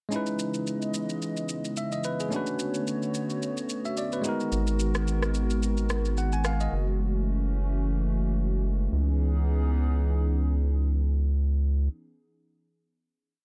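A round analog bass, deep and up front, enters at 4.5 seconds with sustained notes beneath this late-night, soulful amapiano piece. Before it, a bell-like tine electric piano plays rhythmic, rootless chords with short fills, while an electronic shaker and rim click with vintage 12-bit sampler grit set a steady, swung groove of shaker, soft kick and syncopated rim. Both drop out shortly before the 7-second mark, leaving a hollow, airy pad with chorus and the bass to carry the breakdown into a final chord at 8.9 seconds, all in a dark, dry production.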